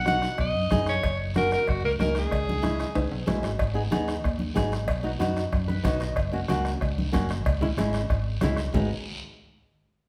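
A driving straight cumbia groove of close, soft-beater bombo and raspy guiro, with bright hard-handed congas and ringing cowbell and timbales in the background, sits beneath a growly, amped fingered electric bass, while an edgy, punchy alto saxophone with scooped notes leads up front until 3.3 seconds, a drum fill leads into the next passage, and a warm, fingerpicked flamenco guitar carries on with a nylon-string fill at 5.5 seconds, giving this fiery fragment of a longer latin piece the reverberant feel of a band playing live in one large room.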